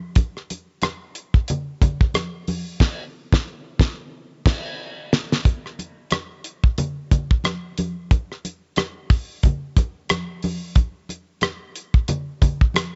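A swung sixteenth-note groove at 90 BPM in 4/4 drives this lush, romantic soul cut from a longer piece, where an up-front, mid-forward damped 70s drum kit with a fat snare, tight kick, hi-hat, rim click and crash plays a fill with a band accent from 2.8 to 5.5 seconds, while quieter, medium-tuned congas struck with hard hands ring close beneath it in a dry room with a dark, rolled-off top end.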